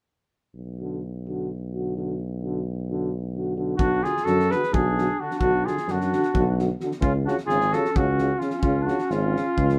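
A tuba opens this excerpt of Balkan brass band music at 0.5 seconds, playing a warm, up-front bass line in a restless, virtuosic 7/8 at 260 BPM counted in eighths, in B dorian with a raised fourth. At 0.8 seconds a clear euphonium with vibrato and a distant, roomy trombone with light vibrato join quietly in the background as accompaniment, all in a classical style. At 3.8 seconds the second section begins: a flugelhorn takes the melody up front with vibrato and a roomy, distant sheen, while a clarinet with a smooth top adds a second line. A loose acoustic drum kit enters at the same moment, with a fat snare, a tight kick and a pumping studio-room sound. The harmony moves from B minor to C sharp, and light reverb surrounds the band.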